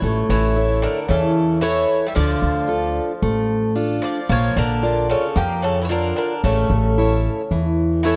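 A straight 4/4 pulse at 112 BPM carries this brooding, bittersweet stretch of Greek folk from a bouzouki band, cycling through A, Dm, Bb and back to A over about 8 seconds cut from a longer piece. A picked bouzouki with a metallic, double-strung tone carries the melody while a second, brighter bouzouki plays a low second line beneath it. A plugged-in steel-string acoustic guitar sits up front with audible finger squeak, and a woody, thumpy pizzicato upright bass anchors the bottom, all wrapped in a lush hall reverb within a rough home-demo mix.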